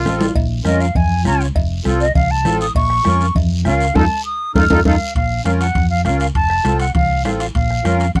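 A dry, close recording in a 1970s studio style carries this danceable, passionate cumbia excerpt at 200 BPM in Bb harmonic minor, moving between Bbm and F, with an F7 and a band accent arriving at 4.0 seconds. An airy silver concert flute leads with a tongued, straight-tone solo through the first 5.2 seconds, set up front beside a sweet, reedy accordion with light tremolo tuning and a dark, round hollow-body electric bass, while a drum fill opens the piece and another returns at 4.3 seconds. Beneath them sit a soft-beaten bombo, ringing metal-shell timbales and cowbell, bright thin-skinned congas in the background and a raspy guiro.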